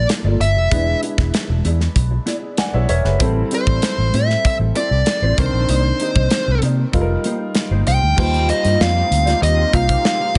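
A fuzz-drenched lead guitar carries the melody up front in this short, polished 1980s jazz-funk pop cut, its picked lines riding over a round, foam-muted fingered bass, a tight-kicked studio drum kit bathed in gated reverb, and a boxy grand piano with audible action noise that slips in a fill from 2.3 to 3.2 seconds. A dark, clean electric guitar riff sits in the background with ensemble chorus, and at 8.2 seconds a lush, detuned sawtooth pad with chorus and phaser arrives as the harmony moves through jazzy chords like Gm9, Cm9 and Eb69, giving the small-room sound an urban, bittersweet mood.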